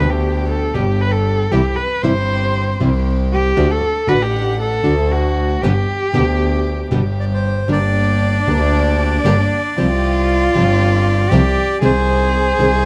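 Close, detailed microphones and little reverb give this tango a dry, intimate presence, with the bowed double bass and the cello sitting up front. The mood is sultry and tense, moving at about 117 BPM in 4/4 with a rubato feel, opening in G major. A single cello carries a smooth, even solo line with vibrato and a slightly boxy tone. Beneath it, the double bass sounds clear, biting and earthy with light vibrato, while a dark, fingerpicked nylon-string guitar supplies deep classical accompaniment and a distant chamber string section adds soft-attack stabs with a pure, floating quality in the background. A reedy, warm bandoneon enters with the melody at 7.2 seconds, touched by slapback echo, just before the music turns to G minor at 7.7 seconds and the harmony moves through Csus4 to an unsettled Ab/C as this excerpt is cut from a longer piece.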